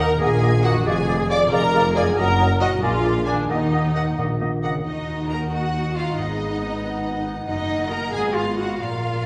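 A dramatic, restless orchestral passage in Eb minor at 91 BPM in 6/8 opens with lush, vibrato-rich violins carrying the melody and a second violin line, alongside a clear oboe, a hollow small flute group, a breathy bassoon, distant violas, very quiet dark horn chords, ringing harp arpeggios, rich cellos, close double basses and a roomy tuba, with the winds, horns and tuba falling away by 4.7 seconds while the strings and harp carry on through a reverberant hall until 9.3 seconds.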